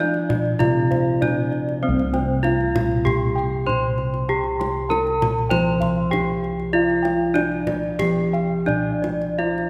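Serene and ceremonial, this short cut from a longer Javanese gamelan piece moves at 98 BPM in a straight 4/4 in C slendro, with a bright, horn-mallet bronze metallophone carrying the melody up front, bossed gongs with a round, beating, boxy tone and a wooden-mallet metallophone with paired-tuning shimmer both spinning arpeggios, a full, dry, close-miked set of bossed gongs holding the bass in the background, and a tight, compressed, saturated kendang joining at 0.1 s, all set in a wet scoring-stage reverb heard from further back in the room.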